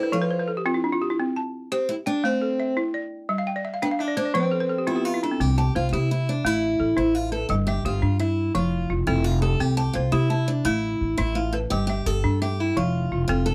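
The recording is dry and close, with the intimate, unadorned feel of a 1970s studio session and the instruments sitting up front. This short excerpt of West African traditional string and xylophone music moves at 114 beats per minute, counted in dotted quarters, in a straight 12/8. It is set in C major and tuned slightly low, to A4 = 438 Hz, and the mood is warm and flowing. A buzzing balafon, struck with hard rubber mallets, spins mid-forward arpeggios throughout and adds fills in the opening section. Beside it, a boxy picked steel-string acoustic guitar carries the melody, with a faint finger squeak audible. At 5.4 seconds a dark, thumpy upright bass with gut strings enters with woody pizzicato notes beneath them as the harmony cycles through C, A minor, G and F.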